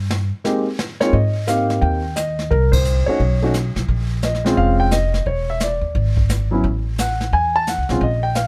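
Swinging and warm, this brisk jazz piano trio excerpt moves at 174 BPM in 4/4 with a swung eighth-note feel in Ab major. A woody, thumpy pizzicato upright bass with gut strings sits up front and opens the passage, joined almost at once by a brushed drum kit with dark cymbals, a medium-tuned snare and a boomy kick heard in a small room. A concert grand piano with deep bass and short sustain carries the melody from 0.4 seconds, and the band hits an accent together at 2.7 seconds under a light reverb.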